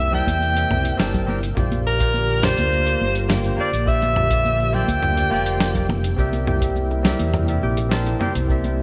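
Smooth and sunny, this sunset chillout excerpt moves at 104 BPM in a straight 4/4, sitting in Bb lydian and shifting between C7 and Bb6 chords. A soprano saxophone carries the melody up front with vibrato and a soft attack, its tone roomy and touched by delay, before it stops at 5.9 seconds. Beneath it, a barky tine electric piano played through a combo amp adds accompaniment with vintage 12-bit sampler grit and delay, while an airy, breathy pad with chorus holds mellow sustained chords in the background. An overdriven fingered electric bass gives a punchy, amped low end, joined by a gritty, compressed soul sampler-style kit with hi-hat, shaker, snare and toms, a deep tape-warm electronic kick, and soft-handed congas and bongos sitting close and dry behind them. At 6.2 seconds a fingerpicked Celtic harp enters with ringing arpeggios carried by delay. The whole mix sits in a lush hall reverb with a bright 1980s-style digital sheen.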